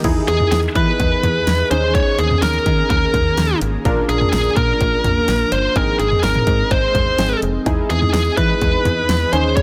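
A bright, upbeat synth-pop groove runs at 126 BPM in a straight 4/4, driven by a punchy, produced electronic drum kit whose fat snare, kick, hi-hat, toms, crash cymbal and cowbell sit firmly in the mix. Beneath it, a slap-like FM bass with a snappy, metallic attack and quick decay anchors the low end, while round, full-bodied analog keys built from detuned sawtooth tones with a filter sweep and chorus supply the accompaniment. In the background, an ethereal, airy pad holds sustained chords with a slow attack and long release, colored by ensemble chorus, reverb and phaser. From 0.3 seconds, a bluesy overdriven electric lead guitar takes the melody up front, its distorted, picked tone trailed by tape echo. The harmony moves from Emaj7 through Eb7sus4, Bb and Ab before returning to Emaj7, all within a dense, heavily limited modern master with light reverb, cut from a longer piece.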